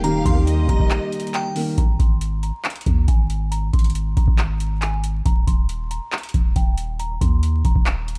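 This hip hop and trap excerpt moves in a half-time feel, its mood both triumphant and wistful. A glassy, crystalline synth bell carries the high melody throughout, treated with chorus and a low-pass filter, and a filter sweep runs across it from 1.8 seconds on. A booming analog drum machine sits up front with a deep kick, metallic hi-hats and handclaps, while a long, sine-like 808-style bass supplies mellow low notes under it. At the opening, a dark, boxy grand piano plays accompaniment, joined by a very quiet, veiled string section holding muted, con sordino chords and a lush violin section playing a distant second line with digital delay. During a break running from 0.9 seconds, the violins drop out at 1.3 seconds, the muted strings at 1.7 seconds and the piano at 1.8 seconds, leaving bell, bass and drums to carry the rest. The production is dark, with vinyl crackle and a faint mains hum in the studio ambience.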